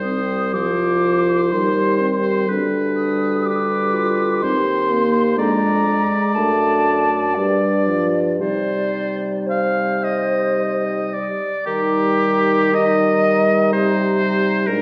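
Solemn and elegiac, this slow romantic movement for wind quintet moves in a rubato three-beat lilt. A mellow, pure flute carries the melody with vibrato from a distance, while an up-front oboe with light vibrato sings the second line, a smooth French horn and a soft, background clarinet fill in the accompaniment, and a dark, roomy bassoon anchors the bass. Cut from a longer piece, it shifts into a new section at 11.7 s, all heard through a wet recital hall and worn, warbling cassette tape with drifting pitch and a dull top end.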